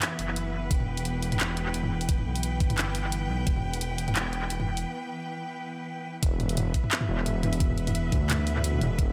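A dark, detuned sawtooth bass rumbles up front in this spacious, cinematic slice of half-time drum and bass, its saturated unison voices beating against each other in a deep, mellow growl. Above it, a bright studio cello section holds lush, intense bowed chords with vibrato, pumping under sidechain compression. A layered electronic drum kit of handclaps, hi-hat and toms carries a swung half-time groove through studio reverb and analog delay, while a knocking electronic kick sits prominently in the mix. The kick falls away at 3.5 seconds, midway through the build-up, and sits out the break before returning at 6.2 seconds when the track drops. Light digital ambience and an echo-heavy mix give the whole passage a roomy, atmospheric sheen.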